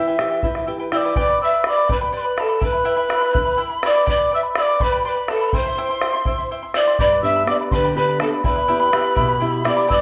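Moving in a straight 6/8 at 82 BPM in E minor, this wistful, earthy Andean folk passage, cut from a longer piece, sets a hollow bamboo pan flute melody with airy chiff and vibrato up front, joined at 0.9 seconds by a bright cane quena second line, over shimmering fingerpicked charango double strings, a deep, dark bombo and a small fingerpicked nylon-string guitar that drops out at 1.2 seconds and returns at 7.0 seconds, as the band plays live in one room bathed in a wet, large studio reverb.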